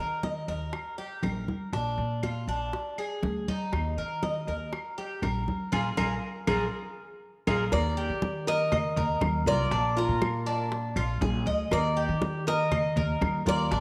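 An up-front, metallic Cuban tres takes the melody from 7.7 s, joined by a dark, thumb-plucked nylon-string guitar on a second line, over a bright, picked tres arpeggio, a growly, woody pizzicato upright bass, thin-skinned congas, round, low-tuned bongos and live-room claves in the background, all in a warm, danceable Cuban son and guajira groove at 120 BPM in Eb major, with a band accent from 5.7 s and an echo-chamber reverb lending this cut from a longer piece a small-room glow.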